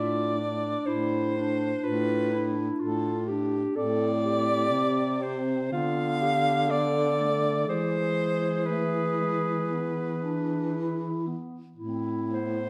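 A close-miked soprano saxophone carries the melody with vibrato, sitting up front in this elegiac, melancholic classical excerpt for single-reed quartet, played with rubato in 4/4. Beneath it, one clarinet sings a warm second line, while a dark, distant and roomy clarinet adds soft-attacked accompaniment, and a baritone saxophone, also up front with vibrato, anchors the bass. The quartet sounds in a wet recital hall reverb, and the harmony comes to rest at 11.8 seconds.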